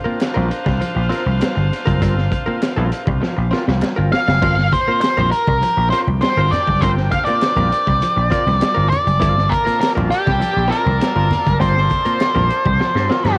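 Lightly reverberant and cassette-tinged like a home recording, this brief cut from a longer sly, funky G minor groove at 100 BPM rides a punchy, up-front vintage slap bass and a gritty, rolled-off breakbeat kit with a high-tuned snare, tight kick and fills near 3.2 and 12.8 seconds, while a twangy direct-recorded clean guitar and a very quiet clean guitar riff play under a Gm11 chord, a tight vintage horn section with octave doubling sits in the background beside crisp group handclaps, and from 4.1 seconds a dark octave-fuzz lead guitar takes the melody up front as thin-skinned, low-tuned congas join softly.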